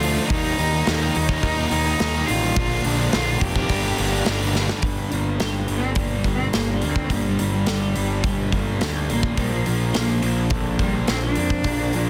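Brooding and angsty, this quiet-loud alternative rock excerpt in G minor moves at 106 BPM in 4/4. A growly fuzz bass and an up-front rock kit with a punchy kick anchor the riffs of a thick fuzz guitar, a crunchy overdriven guitar and a very quiet, double-tracked fuzz guitar, while a distant, biting bowed cello with light vibrato and analog delay carries the melody. After a drum fill at 4.5 seconds, the crunchy and quiet fuzz guitars stop, and the cello takes a solo from 4.8 seconds over twangy, clean twelve-string electric guitar arpeggios with analog chorus, all set in a small room with light reverb and a dense, heavily limited master.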